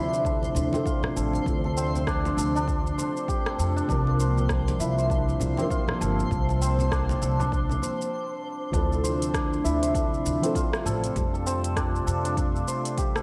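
This organic downtempo excerpt in D minor opens on a shimmering, hammered santur playing ringing arpeggios up front, set over a felt-muted upright piano that sounds dark, mellow and intimate in the background, its action noise audible. Beneath them, a detuned, warbling vintage analog pad holds sustained chords. A woody, thumpy pizzicato upright bass and a faint, sparkling granular texture with an octave-up glimmer sit alongside. Almost at once, a deep house kit of smooth hi-hats, rim click and shaker arrives with a punchy, layered electronic kick at 99 BPM, swung on the 16ths. Very quiet congas with hard hands add bright percussion until a brief stop at 8.1 seconds, where the granular texture also ends. The harmony moves from Dm7 to C7sus4, then back to Dm7 and on to Fadd9 in the closing section, and the piano drops out at 11.3 seconds. Sidechain pumping makes the piano, pad and bass breathe, chorus colours the pad and piano, and diffuse delay trails the santur and piano, all inside a dreamy, reverb-soaked mix with a warm, meditative mood.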